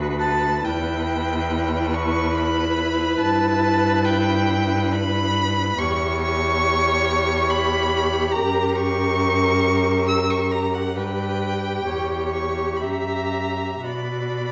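In a flexible, rubato triple metre, this slow romantic movement for string quartet unfolds with a melancholic, solemn character, a 14.5-second passage cut from a longer piece. The cello sounds from the very start, laying a bowed bass line with vibrato and portamento, while the viola and second violin sustain the accompaniment and inner line, both warm and expressive with sliding portamento, the viola carrying a smooth top. At 0.2 s the first violin enters high above with the melody, its tone smooth and even with vibrato and placed up front, and the cello sits forward alongside it. The two violins carry a slightly distant quality, and the rich cello and lead violin give the texture its depth. A reverberant recital hall surrounds the quartet, lending the harmony, which turns through diminished and dominant colours before coming to rest, a grave, spacious glow.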